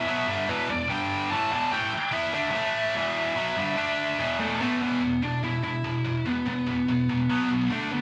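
Two high-gain electric guitars open together at once in this heavy, aggressive rock excerpt, cut from a longer piece and driven by a straight four-beat pulse. Up front, a scooped, bright and double-tracked guitar picks a low, distorted riff that churns around E minor and punches through G5, A5 and D5 power chords. Above it, a warm, picked lead guitar carries the melody in a higher register, its tone distorted as well. After landing on E5 at 4.2 s, the passage shifts into a new section at 4.8 s and reaches B5 at 7.3 s. The pair sounds like a band playing live in one room, with a moderate large-studio reverb giving the attack some depth.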